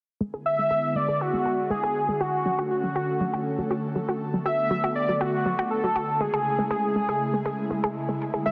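A thick, bold unison lead with vibrato, cassette-tape colour and dub echo carries the melody from 0.5 s in this hopeful, expansive 120 BPM house excerpt in A major, over a lush, warbling vintage pad of sustained chorused chords and a round, nasal analog pluck playing detuned arpeggios with chorus, dub echo and a filter sweep, moving through E7, Dmaj7, Bm7 and Amaj7 in a moderate hall reverb with a dense, heavily limited modern master.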